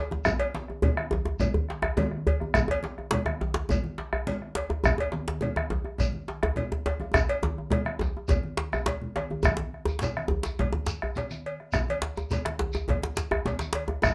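Festive and earthy, this excerpt of a West African traditional drum ensemble moves at 104 BPM in a straight 4/4, with two tight, cracking djembes struck with hard hands, one of them dry and up front. A deep, dark bombo sits forward in the mix beneath low-tuned, thick-skinned congas played with soft hands, while a metallic cowbell and a grainy, mellow, saturated shekere fill out the texture in a moderate small room. A drum fill runs from 7.1 to 9.4 seconds, leading into a new section that carries the groove to the end at 14.1 seconds.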